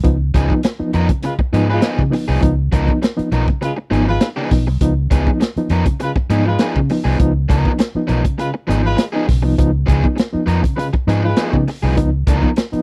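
Funk at 101 BPM in Db mixolydian with a funky, gritty mood, built on a Db9 chord and cut from a longer piece, recorded dry and close in a 1970s studio style. A saturated breakbeat kit with a tight kick and medium-tuned snare drives it alongside a dark, round, foam-muted fingered bass, both up front, while a reedy electric piano plays overdriven stabs through a combo amp with fast tremolo. A crunchy, picked overdriven guitar adds accompaniment from 0.3 seconds, and a clear horn section with light vibrato carries a second line from 1.2 seconds.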